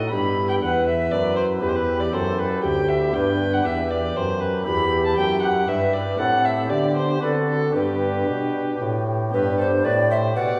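Solemn and grave, this baroque-style sonata fragment in triple time sets an airy, chiffy tenor recorder melody over a dark, nasal gut-string violin second line, with a soft chamber organ on tremulant flute stops and a clear bassoon bass with light vibrato, all heard from further back in a reverberant recital hall.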